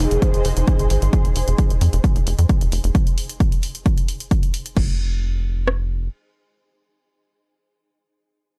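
An overdriven, heavy kick and rim click from a layered techno drum kit sit up front in this relentless, industrial peak-time techno cut at 132 BPM in F minor, driving over a tight, punchy sequencer bass of sawtooth and square tones with a filter pluck, a moving notch and sidechain pumping that runs until 6.1 s, with the Fm harmony giving way at 4.8 s. A cloudy, detuned granular pad with built-in reverb and analog chorus opens the cut beside a very quiet downlifter, both stopping at 1.1 s, while a tape-warm analog drum machine adds pumping crash cymbal and hi-hat until 4.9 s. The mix is dry and carries lossy compression artefacts.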